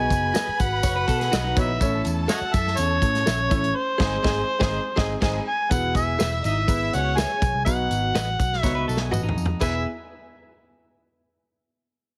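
An up-front, gritty overdriven harmonica with scooped notes and tongue slaps leads this danceable, uplifting uptempo 1960s-style soul excerpt in E major at 123 BPM, carried by a round, foam-muted picked bass, a tight, roomy drum kit, a clear grand piano, a lush bowed violin section, a ringing vibraphone, jingly tambourine, twangy direct guitar stabs with subtle chorus and a clean spring-reverb guitar riff heard at 0.8 and again at 8.6 seconds, all pressed into a heavily compressed radio sound with a band accent near 3.8 seconds.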